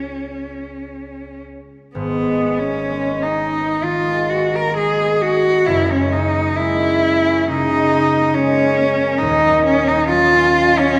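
A wet, church-like reverb surrounds this mysterious, wistful excerpt of an impressionist classical duo in G# dorian, where a clear, focused bowed cello sings the melody with vibrato up front while a ringing, fingerpicked concert harp accompanies throughout the 11 seconds at a rubato 54-70 BPM in 4/4, the harmony drifting from C#9 through G#madd9 and F#9 to D#m7 at 9.2 seconds.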